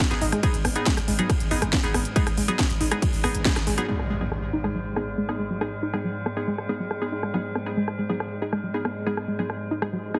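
A straight 4/4 pulse at 139 BPM drives this peak-time techno cut, taken from a longer piece, with a heavy, layered electronic kick that pounds through the opening drop until it falls away after a band accent at 3.5 seconds. Up front, a techno kit keeps going throughout: a cracking, low-passed snare, smooth filtered hi-hats, ride cymbal and rim click, with the hats and cymbals pumping against the sidechain. A growling, buzzy 808-style bass sits in the background under overdrive and a low-pass filter, dropping out at 3.8 seconds, while a metallic, inharmonic drone hovers beneath everything with an eerie, slowly blooming shimmer of chorus and reverb. Over it, a warbling, lo-fi pluck with a dusty, nasal, dark body plays a riff through chorus and tape echo, and crisp, bright wavetable chord stabs, detuned in unison, pump and echo on the G# minor chord. An electronic impact lands at 3.9 seconds to open the second section. 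The mood is driving and industrial, and the mix carries a heavily compressed, radio-like sound with only light reverb.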